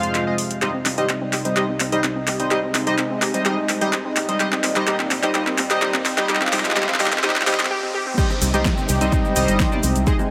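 Driving and emotional, this progressive house excerpt at 127 BPM in C minor builds for 8.2 seconds as a lush, nasal unison pad holds sustained chords, a glassy wavetable pluck spins crystalline arpeggios, a chorused polysynth adds retro stabs with cassette tape colour, and a deep house drum kit with a fat snare and metallic hats runs a drum fill under filter sweeps and a very quiet riser and downlifter from 2.9 seconds, then after a short break the drop lands at 8.2 seconds with an overdriven electronic kick drum, very quiet electronic bongos, congas and toms, and a dark, rumbling detuned saw bass, the pad, pluck, polysynth and bass pumping against the sidechain, all bathed in a huge ambient reverb.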